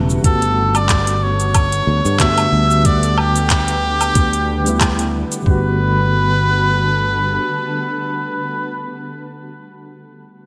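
A relaxed 4/4 groove at 92 BPM, with a light 16th-note swing, carries this smooth sunset chillout passage in G major, cut from a longer piece and opening on a Gmaj9 chord. A soft, tape-warm electronic kick and a produced R&B kit of handclaps, metallic hi-hat, shaker and woodblock, dressed in gated reverb, drive the first stretch and drop out by 5.6 seconds. Beneath them, a growly, punchy fretless electric bass sustains low notes, while round, dark electric-piano-like synth keys with chorus and tremolo fill in the accompaniment. A shimmering, ethereal pad with slow attack, octave-up shimmer and built-in reverb holds chords behind everything. Up front, a close-miked trumpet with a cup mute carries a veiled yet forceful pop-style melody with light vibrato and delay, framed by a lush hall reverb and a bright 1980s-style digital sheen.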